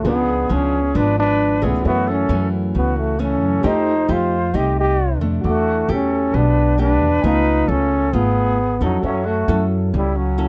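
Bossa nova at 134 BPM in a romantic, relaxed mood, with a smooth-topped, jazz-style trombone carrying the melody up front with vibrato, a breathy, soft-attacked flute tracing a second line alongside it, fingerpicked nylon-string guitar and a very quiet, intimate grand piano with audible action noise as accompaniment, and a woody, thumpy pizzicato upright bass, all captured dry and close over changes moving from C#7b9 through F#m7, F9 and Em11 before settling back on F#m7.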